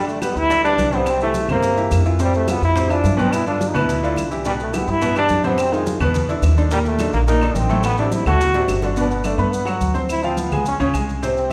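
A brilliant, forceful trombone with vibrato leads this sunny, lively Afro-Cuban jazz excerpt in G major at a brisk 213 BPM, over a clear baby grand piano with short sustain and a dark pizzicato upright bass, while background congas with a bright thin skin, very quiet round low-tuned bongos, woody claves and grainy, close maracas fill out the percussion, all set in a recital-hall reverb, until a drum fill at 8.5 seconds hands the spotlight to a trombone solo from 9.0 seconds.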